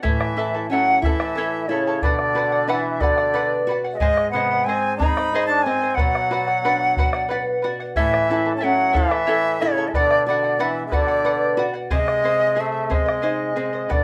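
A breathy, bright large quena sits up front with a reedy, vibrato-laden melody in this wistful yet festive Andean folk passage in 6/8 at 61 BPM in B dorian, carried over a nasal, lightly vibrating trombone with straight mute as the second line, the shimmering fingerpicked double strings of a charango, a woody nylon-string guitar on old strings, and a round, close bombo, all heard across 14 seconds cut from a longer piece as the chords cycle through A, Bm and G# in a moderate studio reverb.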